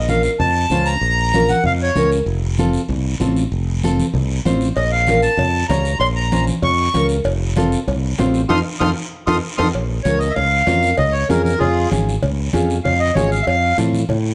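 A reedy, dark accordion leads this fiery, danceable cumbia, stepping out after a brief opening phrase, returning at 4.8 seconds, and taking a solo from 9.7 seconds after a band accent and drum fill. Beneath it, a bright, growly fingered electric bass sits up front while a fingerpicked nylon-string guitar adds warm classical accompaniment. Damped, thick-skinned congas and a raspy guiro drive the groove from the start, with ringing metal-shell cowbell and timbales joining in the background at 4.8 seconds, all in a lightly reverberant room in this excerpt.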